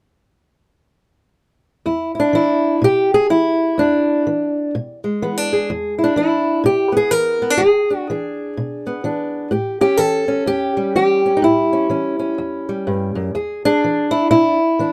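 Close, detailed microphones and light reverb frame this laid-back, rollicking acoustic country blues fragment, cut from a longer piece, where a lone fingerpicked old ladder-braced acoustic guitar with dark, woody, boxy old strings sits up front from 1.9 to 14.9 seconds in a swung 4/4, moving from E7 to A7 at 9.5 seconds and back to E7 at 13.3 seconds.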